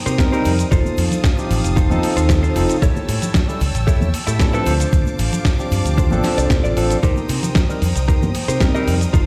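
Played back on a big sound system in a bare stone room, this groovy, sensual nu-disco excerpt moves at 114 BPM in C dorian, with chords shifting from Cm7 through F7, A7 and Dm7 before returning to Cm7 at 7.0 seconds. An up-front, thumpy electronic kick anchors a gritty, tape-warm sampler-style kit of hi-hat, shaker and medium-tuned snare, while background tube shaker and congas and a bright, punchy fingered bass with an envelope filter drive the groove. A clean, picked electric guitar riff with subtle chorus and analog delay, a barky tine electric piano with phaser, delay and sidechain pumping, and a lush, bowed violin section holding smooth vibrato chords with its own pumping fill out the texture.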